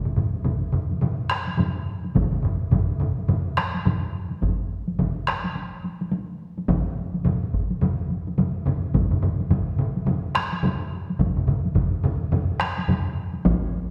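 Japanese traditional taiko drumming, driving and powerful in a swung 4/4, with a compressed, saturated solo taiko struck with hard sticks up front alongside three ensemble groups (one hard-sticked in a small room, one heavy-sticked in a live room, and a dry, close heavy-sticked group set back), all entering within the first half second and playing until about 13 to 13.6 seconds in a wet hall reverb, cut from a longer piece.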